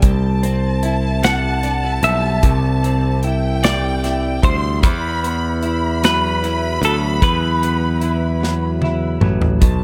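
This excerpt from a six-eight pop ballad has a heartfelt, swaying mood in a straight 6/8 lilt, set in a small room with an echo-heavy mix. A modern studio drum kit sits up front with an airy, polished sound, a punchy kick, a medium-tuned snare, hi-hat and toms. Alongside it plays a bright, growly picked electric bass recorded direct. A clean, double-tracked electric guitar, recorded direct and compressed, provides warm picked accompaniment. A lush violin section bowed with expressive vibrato carries a distant second line high above. From 1.2 seconds to 9.2 seconds, a twangy twelve-string electric guitar takes the melody through tape echo. The harmony moves from C to Esus2 at 4.8 seconds, and a drum fill at 8.4 seconds leads toward the cut.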